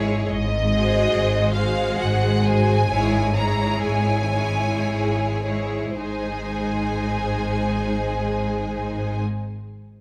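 A tender, slow romantic movement for string orchestra in a flexible, rubato triple time opens with rich, bowed second violins, an intense, bright viola accompaniment, a smooth cello line set back in the background and a lush double bass with a soft attack. At 0.3 s the first violins enter up front with a focused, warm melody over harmonies that shift from Ab7 to Dbm/Ab, as the music slows until the return to Ab at 6.0 s. The sections sing with vibrato in a moderate scoring-stage reverb captured by close, detailed microphones, and this fragment is cut from a longer piece.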